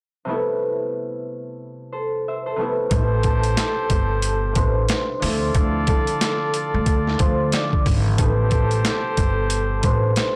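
A blown-out, overdriven small-room sound gives this moody, reflective boom-bap hip-hop excerpt its grit, set at 91 BPM in A minor with a swung 16th feel over Am7 and Dm7 chords. A thumb-plucked concert harp rings alone from 0.2 s. At 2.9 s, a gritty, pitched-down sampler-style kit with a thumpy kick, high-tuned snare, handclaps and hi-hat arrives up front alongside a woody pizzicato upright bass on gut strings, while a clear, punchy trumpet section adds tight stabs with slapback echo. From 3.2 s, a mellow soft-mallet vibraphone carries the melody with motor vibrato and its own slapback echo.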